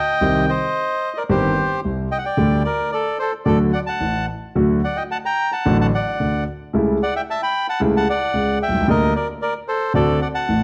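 Tango fragment, tense and passionate, played with a rubato feel. A reedy, dark bandoneon carries the melody up front, while an intimate vintage concert grand, with deep bass and audible action noise, accompanies from 0.2 seconds through harmonies that move from C minor through D suspended and A7 over C sharp to a closing D7. A moderate, large studio reverb and a dark, warm production frame both instruments.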